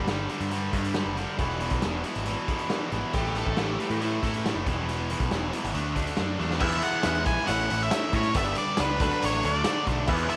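Confident and swaggering, this straight-ahead classic rock cut at 138 BPM rides a biting overdriven guitar riff and a second distorted guitar riff over a growling picked bass and a punchy, gritty garage drum kit in a small room, with a slide guitar with slapback echo slipping in from 3.1 to 4.5 seconds before a drum fill at 6.4 seconds opens the way for a dark octave-fuzz lead and a very quiet, brilliant baby grand piano from 6.6 seconds.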